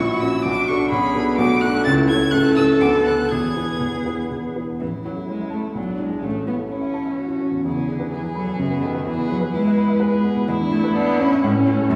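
In a rubato 3/4 at 127 BPM, this lively, graceful piece of a quick classical-period movement for piano quartet in A major, tuned to A4 = 438 Hz, sets a smooth, even violin melody with vibrato over an intimate, close cello second line played sul tasto with an airy bow, while a rich, expressive viola with portamento sits distant in the background and an up-front baby grand piano with audible action noise and long sustain fills the accompaniment, the whole quartet placed in a wet scoring-stage reverb as a new section at 4.8 s moves toward E before settling back on A.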